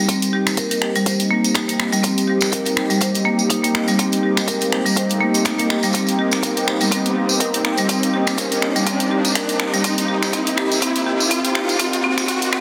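A swung 16th-note groove at 123 BPM drives this earthy afro house build-up in C minor. A punchy, layered electronic kick, a house kit of finger snaps, warm hats and toms, and a jingly vintage tambourine sit under a woody, up-front marimba arpeggio played with hard mallets, swept by a filter and trailed by dub echo. Meanwhile, a smooth, detuned sawtooth pad holds a Cm7 chord with chorus and sidechain pumping, a round sub bass stays barely audible, and a background riser enters at 0.5 s, all within the lush hall reverb of a dense, heavily limited mix.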